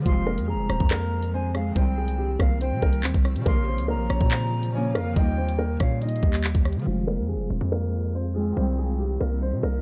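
A dark, mellow grand piano carries the melody over a bright, ringing Celtic harp, a very quiet, blurred granular pad and a punchy, saturated 808 bass, opening this ominous, menacing half-time drill excerpt at 141 BPM in F minor, with both piano and harp softened by a low-pass filter. A distant, pure silver flute with digital delay adds a second line until 6.4 seconds, while an up-front drum kit with knocking kick, metallic hats, handclaps and rim clicks, roughened by 12-bit sampler grit, drives the Fm, Cm, Bbm, Eb progression until 6.9 seconds. From there a filter sweep runs to the end, the piano's boxy, intimate tone and audible action noise sitting in a dark production.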